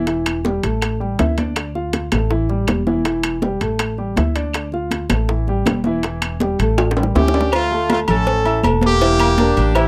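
A brilliant, punchy horn section takes the melody at 7.2 seconds, cutting through this danceable salsa excerpt with a tight, up-front sound. Beneath it, a natural-sounding grand piano plays accompaniment and a growly, thumpy upright bass plucks woody pizzicato lines at 161 BPM in a straight 4/4. The percussion is dense and passionate: ringing, high-tuned congas with a compressed, saturated edge, tight bongos and cowbell struck with hard hands, metal-shelled timbales and agogo bells, and woody claves set back in the background. The chords cycle through Emadd11, A5 and Dm, and an A7 arrives with a drum fill at 6.8 seconds that leads into a new section at 7.5 seconds, where the harmony moves through Dm and A toward Em7b5. A clear, roomy saxophone section with light vibrato adds a distant second line at 9.2 seconds. The recording has the dry, close feel of a 1970s-style studio with light reverb.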